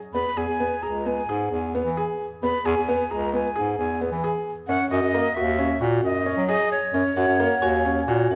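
A breathy, bright wooden flute carries the melody up front, its tone woody with vibrato, tongued notes and a slightly unsteady edge, in this restless, hopeful chamber piece in an uneven 5/4 meter. Beneath it, a felt-muted upright piano plays soft, intimate arpeggios with audible action noise, while a clear, present bass clarinet holds the bass line in a classical style; the harmony moves from E to F#6 at 4.7 seconds. A metallic, ringing vibraphone played with hard mallets adds a second line at 7.2 seconds, and a moderate concert hall reverb surrounds this short passage cut from a longer work.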